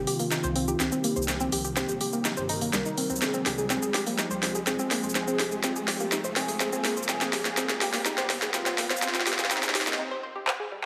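Up front, a tape-warm techno drum kit with cracking snare, smooth hats, handclaps and shaker drives this dramatic melodic techno build-up at 124 BPM over Cm7 and Fm. A woody wave-folded pluck arpeggiates with chorus and delay, while a fat analog lead melody and a lush unison pad both carry filter sweeps in the background. A dark detuned saw bass rumbles beneath, a riser climbs until 10.0 s, and a short break follows at 10.0 s, all in a lush hall reverb.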